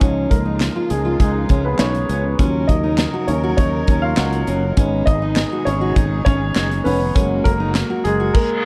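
An up-front, woody upright piano carries this short, dramatic piano-driven pop excerpt at 101 BPM, moving through Dbadd9, Ebm7, Abm and Gbadd9 over a punchy kick, a medium-tuned snare, hi-hat, handclaps and crash from a polished, airy drum kit. A full-bodied fingerpicked dreadnought guitar plays a riff, a round fingered electric bass holds the low end, and lush bowed strings with vibrato sustain chords in the background. Everything but the piano drops out by 8.5 seconds, when an electronic reverse cymbal rises beneath it in a dark production with light reverb and small room ambience.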